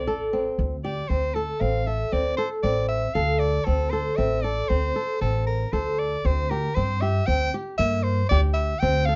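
Restless and urgent, this excerpt of contemporary chamber music moves in 5/4 at 116 BPM in D minor, with a clear, breathy soprano saxophone carrying a jazz-style solo melody with light vibrato over fingerpicked acoustic flamenco guitar arpeggios and thumpy, woody pizzicato upright bass on gut strings, all three placed up front in a moderate studio ambience with a dark, warm production.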